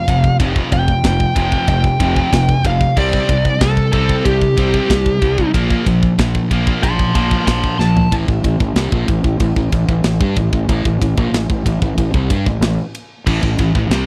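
A high-gain lead guitar, distorted and carried by tape echo, opens this heavy metal excerpt with a soloing melody up front that rides from G4 to C6 until 8.1 seconds. Beneath it, a bright, scooped high-gain guitar and a dark, sludgy overdriven guitar pick out riffs in the background over F5, C5 and Bb5 power chords in A phrygian, at a steady 93 BPM in 4/4. A growly fuzz-fingered electric bass and a tight metal drum kit, with bright cymbals, a medium-tuned snare and a tight kick, drive the music with an epic, relentless weight. A drum fill at 7.8 seconds leads into a second passage on A minor, where the lead drops out and the sludgy guitar, bass and drums press on, the scooped guitar returning briefly at 13.3 seconds. The sound is dry and close, in the manner of a 1970s studio, with the drums up front in a big-room acoustic.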